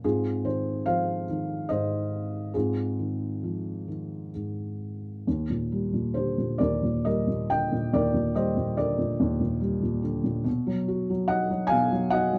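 A felt-muted upright piano opens alone on an Ab6 chord, playing a peaceful, lyrical classical passage in 3/4 at a gently rubato 62-75 BPM in Ab major. At 5.3 seconds the music shifts to Eb major on an Ebmaj7 chord, with a B chord arriving at 10.5 seconds, all within a calm span ranging from Eb2 to Ab5. The piano sounds soft, boxy and intimate, with the short sustain of thick felt, placed up front in a dark production with light reverb, and this brief passage is cut from a longer piece.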